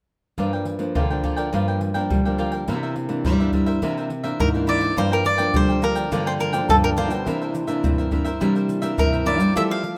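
A crisp picked cavaquinho melody enters at 4.4 seconds over a second crisp cavaquinho, two fingerpicked nylon-string guitars (one carrying the bass) with audible finger squeak, and a close, tight surdo, pandeiro and egg shaker groove, giving this bittersweet yet lively samba and choro piece in G minor a straight 105 BPM pulse as it cycles between Gm7 and C9 in a rough home demo mix bathed in moderate plate reverb.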